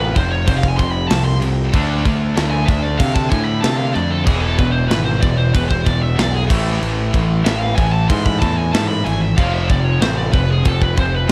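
Heavy metal, heavy and relentless, cut from a longer piece: a high-gain lead guitar with distortion and tape echo solos over the whole passage, while three riffing guitars churn beneath it: one overdriven and double-tracked in the background, one scooped and very quiet, and one heavy high-gain part. A growling picked bass, overdriven and punchy, sits up front. A tight metal drum kit enters at 0.2 s with bright cymbals, a medium-tuned snare and a firm kick, all in a big room. The dark production has little reverb, and the harmony moves through F5, D5, E, A5 and F.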